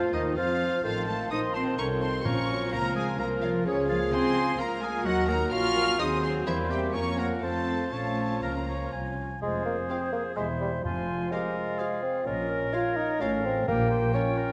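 A moderate scoring-stage reverb lends this urgent, dramatic fragment of a longer classical-period orchestral movement a sense of space, as it presses forward at a quick 127 BPM in 3/4 with a flexible, rubato feel. The violin section carries the melody in a soft, sul tasto tone with light vibrato, while a second, very quiet violin line joins the oboe, clarinet and airy silver flute in supporting lines. The mellow bassoon sits prominently in the accompaniment, with the violas further back. A French horn section holds smooth, tight sustained chords in the background. Cellos and a dark double bass section ground the harmony, and very quiet timpani on medium mallets add brief accents from 2.3 seconds. The music moves from Bb minor to F minor at 9.4 seconds, heightening the sense of drama.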